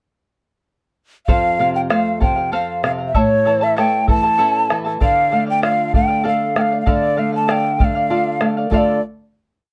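At 1.3 seconds the full Andean ensemble enters together, with a close-miked cane quena carrying a motif-based melody of short song phrases over a festive, earthy folk groove in D minor. The tempo is an unhurried 65 beats per minute in a straight 6/8, and the quena sits up front with a mellow, hollow, airy tone, tongued notes and vibrato. Beneath it, the charango shimmers with its double strings, some doubled at the octave, mixing fingerpicked notes with rhythmic strumming on open chord shapes. The small-sounding nylon-string guitar, also up front, is fingerpicked and supplies bass notes and chord figures, while the deep, dark bombo keeps an evenly spread pattern with the feel of a small room. The harmony moves from F to A to D minor, and this short, complete piece comes to rest on a final chord from 8.7 seconds, captured with close, detailed microphones and light reverb.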